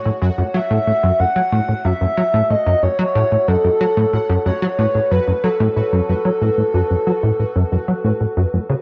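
Ambient, sequencer-driven space music in F# minor at 92 BPM, this short cut from a longer piece feels cosmic and expansive, resting on a single F#m chord throughout. Up front, a punchy, funky analog bass riff with a fast filter pluck and decaying tail sits alongside a soft, breathy, flute-like synth melody carrying vibrato, lush chorus, analog delay and a cassette tape tint. Beneath them, a mellow, detuned pulsing texture with slow attack and long release drifts quietly in tempo, the whole piece bathed in a wet spring reverb and the hazy character of a home cassette recording.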